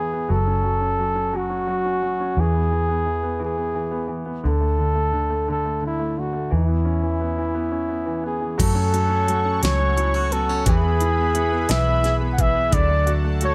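A slow six-eight pop ballad at 58 BPM in F# minor, this melancholic, aching excerpt opens with a mellow, jazz-style flugelhorn carrying the melody up front over clear concert grand piano accompaniment and a dark, round, foam-muted fingered electric bass. At 8.6 seconds the texture fills out as a pop drum kit with a knocking kick, fat snare and crisp hats arrives alongside a shimmering, retro pulse-width pad with a soft attack and chorus. A fingerpicked steel-string acoustic guitar also enters there, its arpeggios set in the background with tape echo, all within a small room ambience.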